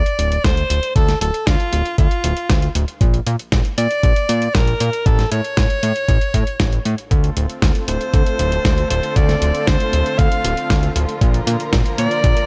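Melodramatic and danceable, this short italo disco cut from a longer piece moves at 117 BPM in D minor, with an edgy, forceful alto saxophone carrying the melody through tape echo over a fat, saturated sawtooth bass, a thumpy up-front electronic kick and a gritty, dusty soul sampler-style kit of hi-hat and snare, while a dark, woody string section enters at 7.1 seconds with soft-attack sustained chords as the harmony moves from Dm through Bb and A to Dm7, all in a dry room.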